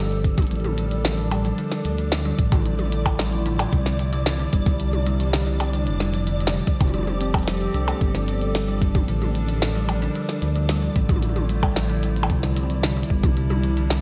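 A warbling, lo-fi pad holds sustained chords through chorus, phaser and built-in reverb as a buzzing, woody kalimba spins arpeggios through 12-bit sampler grit and digital delay, while a dark, detuned saw bass rumbles up front beneath them. This melancholic, intricate IDM moves at 112 BPM in G dorian, cycling through Gm, Dm, C and F6, with a glitchy kit of tiny snare, clicky hats, toms and percussion blips joined by a soft electronic kick that sounds re-recorded in a large room. A faint grainy, flickering texture pumps with sidechain high above, all set in light digital ambience, in this excerpt cut from a longer piece.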